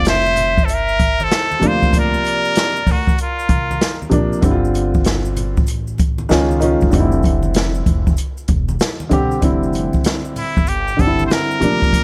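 A straight-muted trumpet and a breathy flute open this smooth jazz-hop fragment together, the trumpet nasal and up front while the flute sits distant and hollow behind it. Both drop away at 4.1 seconds, leaving a dark upright piano, intimate and woody with its action noise audible, to carry the swung groove alongside a thumpy pizzicato upright bass. An acoustic jazz kit in a small room drives the hip hop pulse with hi-hat, a boomy kick and a medium-tuned snare, while maracas and congas played with hard hands sit quietly in the background. The harmony drifts through suspended and added-ninth colours before the trumpet returns at 10.4 seconds for a brief solo with a soft attack and a brilliant edge. A faint mains hum and small room ambience round out the warm, smooth mood.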